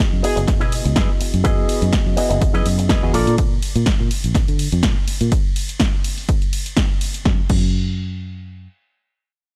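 Dry, gritty hardware sound and digital ambience frame this sunny, feel-good filtered disco house excerpt, where a punchy, up-front electronic kick and a layered house kit of snare, hi-hat, ride and crash drive a lightly swung groove, a dark, round fingered bass with tube saturation and sidechain pumping runs underneath, and a reedy, lightly overdriven electric piano with phaser sits alongside a twangy, clean envelope-filtered guitar carrying 12-bit sampler texture until about 3.4 seconds, after which the drums stop near 7.7 seconds and the bass carries on alone until 8.7 seconds.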